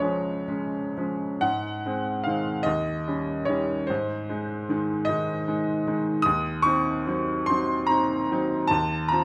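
A slow, rubato 12/8 feel at 40-52 BPM in dotted quarters carries this yearning, melancholic romantic nocturne excerpt, where a bright, brilliant baby grand piano plays solo from Db2 to Eb6, up front with long sustain, moving through Db, Ab, Eb7, Cdim/Eb and F5/Eb, tuned to A4 = 444 Hz and captured by close, detailed microphones in a recital hall with moderate 1.4-second reverb.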